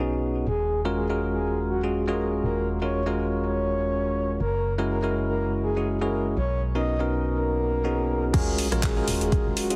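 A bright, bell-like tine electric piano opens this late-night deep house excerpt with up-front stabs, shaped by a low-pass filter and sidechain pumping. Beneath it sits a hollow, organ-like FM bass, dark and percussive, with tube saturation and the same pumping. At 0.5 seconds a breathy, flute-like synth lead enters, soft and sustained, with vibrato, chorus and delay. The hypnotic, gently swung groove moves through Ebm11, Gb7 and Bmaj7 chords. At 8.3 seconds the drop lands with an impact: an overdriven electronic kick and a deep house kit of crash cymbal, handclaps, hi-hat and rim click, both re-recorded in a small room, joined by a very quiet sub drop. Light digital reverb and heavy multiband compression give the whole mix a radio-like sound.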